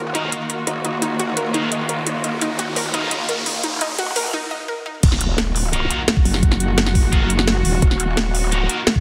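Tense and aggressive, this dark technical drum and bass cut opens on veiled, muted chamber strings holding an Ebmadd9 chord while a round, detuned analog pluck arpeggiates and a saturated growl bass pumps beneath, with bright, high-gain guitar stabs and cracking snare and metallic hats from the up-front drum kit. A background riser builds to a brief break, and at 5.0 seconds the drop lands with a knocking, tape-colored electronic kick and an impact. Then a metallic FM wobble bass cuts in at 6.3 seconds, all set in a lush hall reverb under a dense, heavily limited master.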